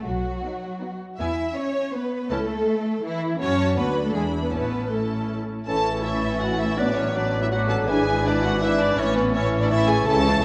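Heard through worn, warbling old tape with a moderate stage reverb, this cheerful, spirited classical-period movement for symphony orchestra moves in a quick, rubato three, cut from a longer piece. A woody, dark violin section carries the melody over a second, expressive violin line, smooth violas, soft-attacked cellos and a lush double bass section. At 5.7 s a clear, roomy oboe, an airy flute ensemble in the background, a solo bassoon and a very quiet French horn section holding sustained chords join the strings.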